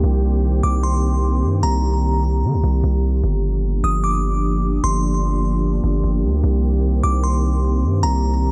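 A dark production with a light reverb frames this ethereal, melancholic piece of atmospheric cloud-rap, cut from a longer track and moving in a half-time feel. A long, deep 808-style bass with a sine tone sits up front beneath a moody, detuned analog pad that holds sustained chords with a slow attack and chorus. From 0.6 seconds a glassy, crystalline synth bell with a vintage FM character carries the melody high above, warbling through chorus, tremolo and delay.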